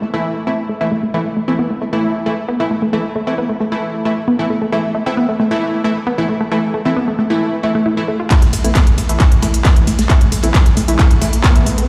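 Driving peak-time techno in A minor at 134 BPM, relentless and hypnotic, where a lush, detuned sawtooth unison pluck riff and punchy, up-front supersaw stabs pump against the sidechain with delay through a filter sweep on the arpeggio, until at 8.3 seconds an overdriven, heavy electronic kick, overdriven claps and smooth hats, and a background acoustic kit with dark ride cymbal and fat snare drop in for a build-up and drum fill, joined at 9.9 seconds by a background riser, all in a lush hall reverb heard as if on a big sound system in a bare room.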